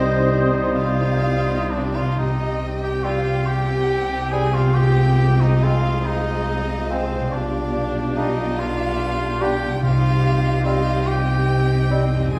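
Elegiac and melancholic, this classical fragment in C minor moves slowly in 6/8 at 47 BPM, with uneven, rubato beats, as the harmony passes from Cm through Fm/C and G7/B back to Cm at 9.8 seconds. A very quiet, vibrato-rich violin section carries the melody over a close, expressive second violin line, clear clarinet, a hollow silver flute and an oboe that drops out at 1.8 seconds, while mellow bassoon and smooth-topped violas accompany. A dark, distant horn section holds chords, ringing fingerpicked harp arpeggios sit in the background alongside punchy, distant trumpet stabs, and dark cellos, focused double basses and a tuba that stops at 1.9 seconds anchor the bass. Soft-mallet timpani add very quiet, round, dry strokes on C, all set in a recital hall's wet reverb.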